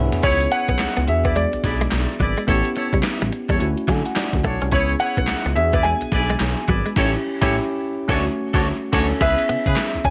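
Swung sixteenths in 4/4 give this confident, bouncy new jack swing R&B fragment its strut, driven by an up-front, overdriven drum machine with a thumpy kick, gated-reverb snare, handclaps, hi-hat, toms and crash, under a smooth, gliding synth bass. A clear baby grand carries the melody through tape echo, while a bell-like tine electric piano adds a fill at 3.6 seconds, a clean, direct electric guitar picks a chorused riff, and a tight horn section with light vibrato punches in stabs. The band hits a shared accent from 7.0 seconds, with the kick dropping out from 8.1 seconds, all in a dry mix.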